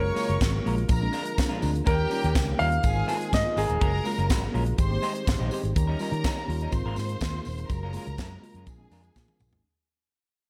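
Disco at 123 BPM in Ab major, this short cut from a longer piece feels celebratory and glamorous, moving through rich chords such as Gbmaj9, Bb7, Eb7 and Ab69. A natural-sounding concert grand piano with deep bass carries the melody for the first 4.0 seconds, while a lush, bowed studio string section with smooth top and vibrato sings a second line. Up front, a punchy, amped fingered electric bass pairs with a tight funk drum kit whose high-tuned snare and tight kick sit dry and polished, touched by gated reverb. In the background, a worn, slightly out-of-tune tine electric piano, a clean semi-hollow electric guitar and a dark, round tonewheel organ with chorus vibrato and slow rotary speaker fill out the harmony, with a jingly tambourine adding sparkle. The whole mix sits in light small-room ambience, fading out from 5.8 seconds before a drum fill at 9.2 seconds.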